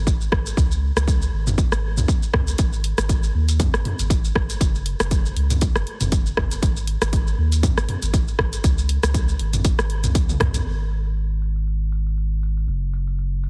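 A round analog bass anchors this afro house excerpt, its deep, dark tone moving between F#1 and D#2 with a fast attack, long sustain and a filter sweep, pumping against the sidechain from the opening moment. At 119 BPM in 4/4 with a 56% swing on the sixteenths, the groove feels earthy and warm. An overdriven electronic kick sits up front, punchy and layered, and carries the pulse until 10.5 seconds. Around it, a deep house kit of hi-hat, rim click, shaker and toms runs through low-pass filters that soften its edges, and a drum fill at 10.3 seconds leads into a second section at 10.7 seconds. The mix is dry and heavily compressed, giving the whole a close, radio-like sound.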